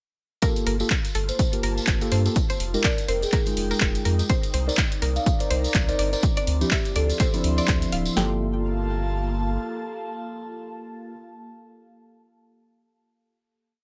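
At 0.4 s a moody deep house groove in G minor starts at 124 BPM with a lightly swung feel. It brings a punchy, up-front analog drum machine kick on four-on-the-floor with a backbeat snare, tape-tinged programmed hats and claps, a distant jingly tambourine, mellow tine electric piano chord stabs roughened by 12-bit sampler grit and sidechain pumping, and a bright, woody synth pluck riff carrying the melody with chorus and delay. A deep analog bass with a nasal edge, an airy, breathy pad with phaser, and a soft-mallet marimba in the background arrive within the first seconds, and a warbling, nostalgic tape-like pad joins at 4.9 s over the minor ninth chord changes. The drums stop around 8.1 s, and the keys, pads and bass settle onto a final G minor ninth chord.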